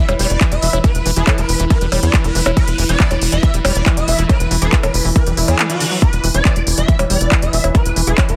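A swarming, bright rave lead pumping under sidechain with chorus, phaser and delay opens this intense psychedelic trance excerpt alongside a very quiet, nasal vowel-sweep wobble bass and a squelchy, gritty acid bass riff with dub echo and pumping in the background, as an evolving wavetable pad with phaser, a warbly, lo-fi tape-like pad with chorus, a tight, punchy sequencer bass and an up-front techno kit of smooth hats, handclaps and percussion blips join, followed by a heavy electronic kick drum from 0.4 s and a reverse cymbal from 5.3 s to 6.0 s, all in a dense, heavily limited modern master with light reverb.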